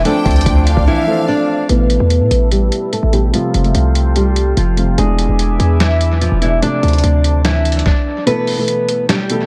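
A punchy, heavy 808-style bass sits up front in this eerie, hard-hitting half-time trap piece, under a muffled, pitched-down lo-fi sampler drum kit of thumpy kick, snare, hi-hat and finger snaps, with the kick muted from 8.3 seconds. A fingerpicked steel-string acoustic guitar carries the melody over a dark, boxy concert grand piano, both filtered and soaked in dub echo, while an airy, breathy pad with chorus hangs in the background and a lush violin section adds a brief second line until 1.7 seconds. After an early break, a filter sweep runs through the middle of the echo-heavy, small-room mix.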